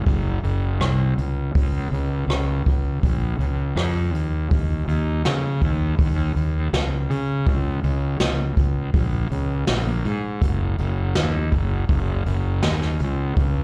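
Quiet-loud alternative rock moves at 81 BPM in a straight 4/4, set in Db major with a cathartic, anthemic mood. This excerpt lasts about 13.6 seconds and comes from a longer piece. A fingered electric bass carries the low end from Gb1 up to Db3, its direct, amped tone pushed into overdrive and fuzz and sitting up front in the mix. A jazz drum kit played with brushes joins at 0.1 seconds, working hi-hat, rim click, snare and kick, with a medium-tuned snare, a boomy kick and a rolled-off top that gives the acoustic kit a warm, roomy character. The performance is heard as a live gig through a club's PA, with the venue's reverb framing the two players.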